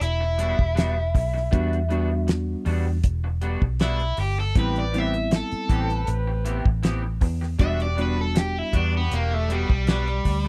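An overdriven semi-hollow guitar takes the lead from the first second, its bright, picked hollow-body tone sitting up front as it solos through this brooding, soulful cut from a longer straight-eighth soul blues in E minor at 79 BPM. Beneath it, a 70s drum kit in 4/4 plays hi-hat, kick and snare with a dry, fat snare, tight kick and rolled-off top. A dark, round, foam-muted fingered bass sits punchy and forward. A second electric guitar through a small old amp adds twangy, compressed stabs with a slightly broken-up edge and analog chorus, while a worn, slightly out-of-tune tine electric piano enters at 1.5 s with clean accompaniment. A mellow horn section comes in at 4.5 s, holding sustained chords with light vibrato in the background, as the harmony moves from Em9 to Am9 and back to Em9 in a dry, close 1970s-style studio sound with small room ambience.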